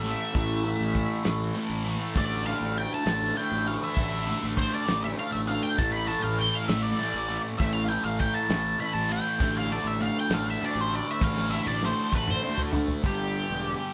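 Mysterious and trippy, this short cut of psychedelic rock moves in a slow, straight 6/8, with a band playing live together in one large studio room that lends a moderate reverb. An up-front octave-fuzz lead guitar takes a solo throughout, its dark, distorted tone run through wah as it plays the melody high over the band. Beneath it, a double-tracked, compressed fuzz guitar drives the riff with a phaser coloring its picked, distorted sound, while a fingered electric bass adds a bright, growly overdriven low end. A softly plucked tanpura sits in the background with a buzzing, shimmering drone, and a grainy egg shaker ticks close by. The dry, dark 70s drum kit, with its fat snare and tight kick, works through hi-hat, snare and toms and rolls into a fill from 11.2 to 13.0 seconds as the harmony moves from A5 and D5/A toward G5.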